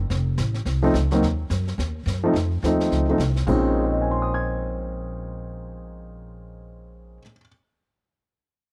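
A brisk swing at 214 BPM in 4/4, with lightly swung eighths, drives this smoky, moody jazz piano trio fragment in Bb minor, tuned slightly low to A4 = 439 Hz. The upright bass opens the cut, played pizzicato with a woody, dark steel-string tone placed up front, and it holds the low end from F1 to Gb2. The acoustic brush kit sits further back in a studio room, pairing a high-tuned brushed snare, hi-hat, punchy kick and a dark splash cymbal until it drops out at 3.7 seconds. The grand piano arrives at 0.8 seconds and carries the melody across a broad span from Bb2 to Ab6, its intimate, natural sound close and up front, with the action noise audible. The harmony moves from F through a rootless Cdim and F7 before settling on Bbm11 at 3.5 seconds, and a studio reverb adds a sense of space to the trio.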